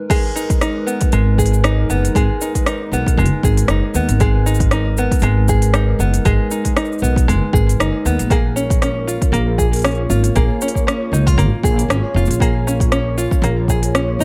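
Folktronica in G# dorian at 117 BPM with a light sixteenth-note swing, autumnal and wistful, where a mellow, plunky fingerpicked open-back banjo plays arpeggios through digital delay over a dark, warbling lo-fi pad with chorus and reverb sitting in the background, alongside a deep electronic kick and a smooth-hatted electronic kit with crash, rim click and shaker, both overdriven and re-recorded in a large room, while a woody, growly pizzicato upright bass with tube saturation comes in up front at 1.1 s, the harmony shifting from G#m to A#m7 at 8.3 s in this fragment of a longer piece.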